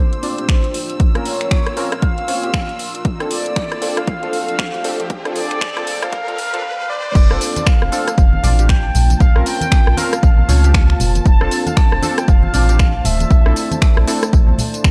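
A punchy, overdriven electronic kick sits up front in a soulful, warm deep house excerpt at 117 BPM in F major, with swung sixteenths, a digital ambience and an overdriven kit of metallic hats, finger snaps, rim clicks, tambourine and crash. A round, warbling horn-like synth lead carries the melody over chorused, phased analog keys stabbing through a filter sweep, while a moody sidechained pad, a veiled con sordino violin section and a very quiet, blurred granular cloud pad drift behind, rocking between F6 and lush Bb chords. An electronic riser builds toward a drop at 7.2 seconds, where a deep, tube-saturated sub bass with octave arrives and bright, close congas join at 7.6 seconds.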